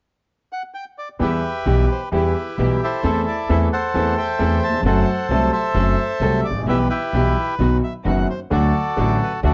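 A reedy, up-front bandoneon carries the melody from 0.5 seconds with a plate reverb sheen, in a dramatic, tense tango in E minor at 131 BPM with a rubato feel. At 1.2 seconds a clear, vintage-toned grand piano, a woody, thumpy pizzicato upright bass on gut strings and a very quiet, veiled section of muted chamber strings playing bowed stabs join in as the harmony moves from Em through Am/E, F#dim and B to D. The production is dark and tape-saturated, set in a moderate club-sized room, and the passage is cut from a longer piece.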